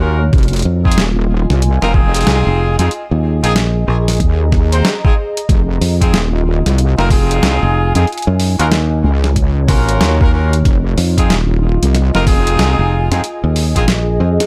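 Glitch hop at 93 BPM in F phrygian, gritty and playful, with a 62% swing on the sixteenths as Fm7, Bb7sus4 and Ebm7 chords cycle through this short cut from a longer piece. An up-front wobble bass, heavy, detuned and saturated with chorus, sits beside a bright, growly fingered electric bass warmed by tube saturation, while a pitched-down, thumpy kick and a sampler-style boom bap kit with a medium-tuned snare and hi-hat drive the groove in a dry room. Tight horn stabs with light vibrato and octave doubling pump under sidechain with delay, and a warbling, nostalgic lo-fi pad with slow attack and built-in reverb hangs behind them, all over a faint mains hum.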